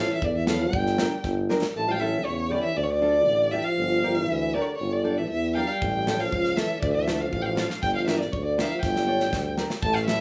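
A vibrato-laden violin carries the melody up front in this bittersweet, festive klezmer excerpt at 119 BPM in 2/4 and G dorian sharp4, bowed with soft attacks and expressive portamento. Beneath it, a dark, breathy trombone whispers a distant second line, a fingerpicked nylon-string guitar adds full-bodied accompaniment with audible finger squeak, and a warm tuba holds the bass with scooped notes. A polished studio drum kit with a punchy kick and a medium-tuned snare drops out at 1.7 seconds, returns at 5.8 and plays a fill from 8.8 seconds, all within a moderate studio reverb.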